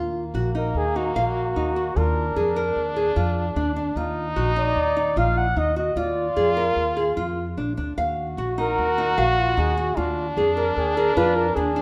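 A breathy flugelhorn carries the melody from 0.6 s, mellow and smooth-topped with a soft attack and jazz-style vibrato, in this restless, urgent chamber piece cut from a longer work in 5/4 at 150 BPM in Eb harmonic minor. Beneath it, a nasal, brilliant French horn with a straight mute plays an up-front second line in classical style. Small, fingerpicked nylon-string guitar arpeggios with audible finger squeak and a woody, growly pizzicato upright bass fill out the harmony, alternating between Ebmadd9 and Bb7/Eb every two seconds, all set in a moderate scoring-stage reverb.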